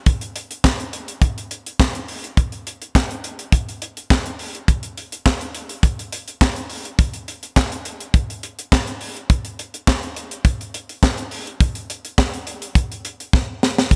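A dry, polished drum sound sits up front in a lightly reverberant room, opening at 0.1 seconds on an acoustic funk kit with a tight kick, a high-tuned snare, hi-hat and handclaps. The groove holds a straight, danceable 4/4 feel at 104 BPM with a late-night mood. A drum fill arrives at 13.3 seconds before this short section, cut from a longer piece, comes to a close.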